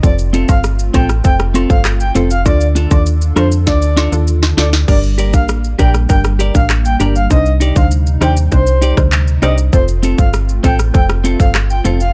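A straight, bouncy 4/4 dancehall groove with a tough edge is driven by an up-front, overdriven electronic drum kit with gritty sampler character, tight kick, sharp snare, metallic hats, handclaps, rim clicks and shaker, plus a fill at 3.7 s, while a punchy, dark FM bass anchors the low end, a hollow, detuned square-wave pluck with chorus, phaser and sidechain pumping bounces beneath a breathy, warbling flute-like synth lead with chorus and delay, a clean, twangy electric guitar picks arpeggios with vibrato, a soft pad sustains chords in the background, and dry cabasa and woodblock add texture until 4.7 s in this short excerpt cut from a longer piece.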